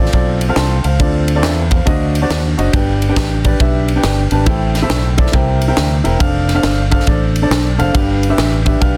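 Jubilant and hopeful, this short uptempo gospel excerpt swings its eighth notes with a buoyant, churchy lift. An upright piano carries the accompaniment with a woody, natural tone and long sustain, sitting up front and breaking into brief fills at 0.4 and 7.3 seconds. Beneath it, a fingered electric bass sounds round and punchy, its direct, amped tone anchoring the low end. A polished fusion drum kit in an airy studio room drives the groove with kick, ride cymbal and a high-tuned snare. The harmony moves from F through Dm7, D7b9 and G to Am7, C7 and F6 before landing on G7, all wrapped in light studio reverb and a dense, heavily limited modern master.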